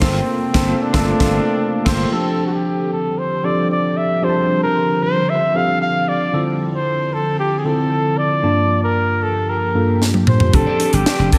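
This slick, nocturnal slice of polished 1980s jazz-funk pop opens at 114 BPM with a band accent, as a tight funk drum kit with a high-tuned snare and bright cymbals, a glassy, growly slap bass and a dark, slightly broken-up electric guitar riff hit together over a Gm11 chord. Up front, a mellow flugelhorn carries the melody with a soft attack, light vibrato and a slapback echo, while a worn, slightly out-of-tune tine electric piano bathed in lush chorus supplies the accompaniment. In the background a silky string machine holds slow-attack chords through phaser and ensemble chorus. After 2.0 seconds the drums, bass and guitar drop away, leaving the horn, piano and strings to drift through F69, Dm7 and Gm9. A drum fill at 10.0 seconds brings the kit back, and the bass and guitar return at 10.5 seconds on F69 before the fragment is cut off. A lush hall reverb gives the whole mix a big arena sound.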